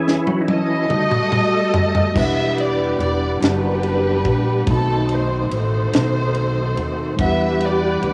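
Slow gospel in 6/8 at 48 BPM on dotted quarters, this fervent, soulful excerpt sits in E minor and carries the sound of a home cassette recording in a small room with light reverb. A reedy, bright tonewheel organ opens at 0.0 s with sustained chords through a fast rotary speaker and chorus vibrato, taking a short solo over a drum fill and a stop in the first 2.2 seconds as the harmony moves from C#m to F#m6. A tight funk drum kit with a high-tuned snare and tight kick comes in almost at once, and at 0.5 s a dark, lush string section takes the melody up front, bowed with vibrato and a smooth top. Around 2.2 s the music settles onto Em9, where a mellow tine electric piano adds accompaniment in the background and a woody pizzicato upright bass with steel strings joins up front. The chords then pass through B7b9 before returning to Em9, as the excerpt is cut from a longer piece.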